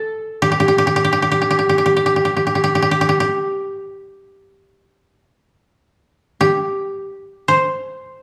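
The recording sits in a moderate recital hall reverb, giving a measured sense of space around a single instrument. This is Japanese traditional chamber music in free time, calm and austere in mood, lasting just over 8 seconds as a fragment cut from a longer piece. A solo koto, played with fingerpicks, carries the whole passage, its tone woody and dry and placed up front. The line stays within a narrow span from G4 to C5, which keeps the mood restrained and contemplative. The opening material returns at 5.2 seconds and runs to the close at 8.2 seconds, giving the brief passage a sense of quiet restatement.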